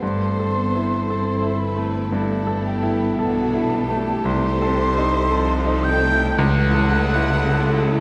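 Classical romantic movement for piano and orchestra, brooding and passionate in a rubato 4/4, where a bright, up-front concert grand with deep bass and audible action noise carries the melody alongside a dark, distant violin section, while a hollow, airy flute and a lush second violin section trace a second line over a close viola section, very quiet soft-attack French horns hold sustained chords, and focused cellos and double basses anchor the bass, the ensemble set in a wet scoring-stage reverb in this fragment cut from a longer piece.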